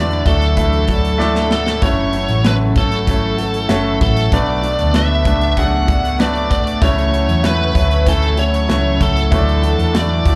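A bright, distorted lead guitar carries a bluesy melody over a clear concert grand piano, a round, punchy hollow-body bass, a picked parlour acoustic guitar tucked in the background and a lush, detuned pad of sustained chords, in this dramatic, earnest piano-driven pop excerpt. A polished studio drum kit with a tight kick and a medium-tuned snare joins at 0.1 seconds and plays a brief fill at 1.2 seconds as the chords move from Dadd9 through F#m7, Bm7 and F#m7/C# back to Dadd9. Slapback echo touches the lead guitar, piano and acoustic guitar, the lead also carries tape echo, and the whole mix sounds like a live gig heard through a club's PA in a small room.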